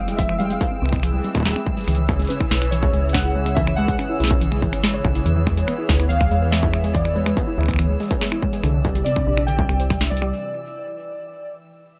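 Warbly, nostalgic lo-fi synth keys carry a cerebral, melancholic melody with tape echo through this 142 BPM IDM excerpt, over a hollow, flute-like pad roughened by 12-bit sampler grit, a dusty arpeggiated pluck with dub echo under a filter sweep, a dark metallic FM bass, a bubbling, resonant stepped-filter texture with sidechain pumping, a punchy analog drum machine of finger snaps, hi-hat and snare, and a distorted electronic kick, in a rough home-demo mix until the break at 10.3 s leaves the keys alone until 11.5 s.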